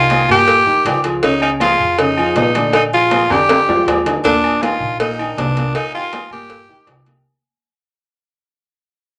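This festive, danceable salsa excerpt moves at 160 BPM in a straight 4/4 in Eb major, cut from a longer piece. A raspy tenor saxophone carries the solo melody up front, close-miked and gritty, with vibrato and scooped notes in a pop style. Beneath it, a dark grand piano supplies mellow, worn accompaniment with audible action noise, while a woody, thumpy upright bass plays pizzicato on steel strings. The percussion adds a round, low-tuned cowbell played close and dry with soft hands, ringing metal-shelled timbales and agogo bells with a vintage, band-limited tone, and thick-skinned, high-tuned congas sitting in the background. The harmony passes through Cm7, Db and Bb7 before a drum fill from 3.3 to 4.2 seconds leads into Eb5 and back to Cm7, as the music fades out from 4.2 seconds to the end. A wet studio ambience with a short reverb surrounds the whole band.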